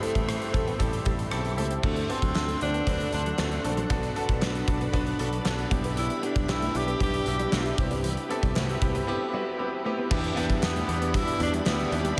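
Soaked in a vast, dreamy reverb, this moody, nostalgic 1980s-style pop excerpt in E minor moves at 116 BPM with a clear, forceful tenor saxophone melody carrying analog delay over a brilliant up-front concert grand piano, a polished gated drum kit with fat snare and bright cymbals, a warm, punchy overdriven picked bass, silky background string machine chords with ensemble chorus, a quiet clean guitar riff, barely audible crisp handclaps from 2.4 seconds, and a very quiet overdriven guitar entering at 10.1 seconds as the chords settle on Em7.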